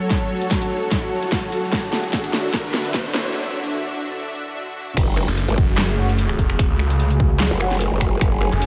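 A wobbling, formant-filtered growl bass arrives at the drop at 5.0 seconds, joined at 5.3 seconds by a snarling distorted saw bass, detuned and sawtooth-edged, and together they drive the chaotic low end of this heavy wobble dubstep excerpt in F# minor at 148 BPM with a half-time, lightly swung feel. Before that, the build-up runs through a drum fill and a filter sweep, with an electronic riser sitting in the background and a break from 3.3 seconds clearing space for the drop. A lush supersaw pad holds sustained chords under chorus and sidechain pumping, moving from F#m to Dadd9 and settling on F#madd9 when the drop hits, while a deep, moody ambient pad with wave-folded, ring-modulated colour lingers behind it. The dubstep kit is up front with a huge snare, metallic hats, claps, snaps and crash, and a punchy, tape-warm electronic kick anchors the groove. Very quiet, mellow brass stabs in a tight classical-style section surface briefly during the drop. 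The mix is dreamy and soaked in a huge ambient reverb, with its top end rolled off.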